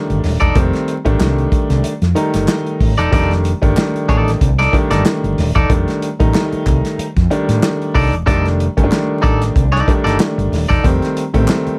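Playful and strutting, this funk groove at 93 BPM swings its sixteenths over an F13 chord, with a woody, up-front upright piano playing stabs, a round, hollow-body fretless bass, a dark, smooth soul drum kit with a tight kick, a twangy, slightly broken-up electric guitar adding accompaniment from 0.4 seconds, and crisp, dry group handclaps arriving at 1.2 seconds, all in light reverb with vinyl crackle.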